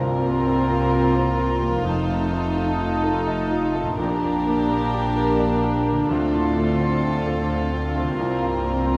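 Cinematic, emotional orchestral film score in a bittersweet, longing mood at 86 BPM in a rubato 3/4, where a soft-edged sul tasto violin section carries the melody over a second violin line, an airy flute and a distant clarinet, while a clear piano with audible action noise, dark violas, mellow very quiet French horns, a ringing fingerpicked harp, smooth-topped cellos and floating double basses fill the accompaniment and bass beneath a wet scoring-stage reverb.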